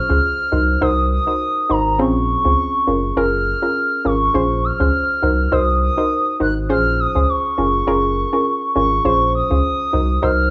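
A hollow, woody clarinet-like synth lead with chorus and vibrato carries the melody high over a soft, decaying round pluck with chorus and a deep sub bass that enters at 0.1 seconds, in this mellow, hypnotic afrobeats excerpt in B-flat minor at 102 BPM with a light 16th-note swing, cycling through Bbm7, Cm7b5 and Gbmaj7 chords in a small, lightly reverberant room.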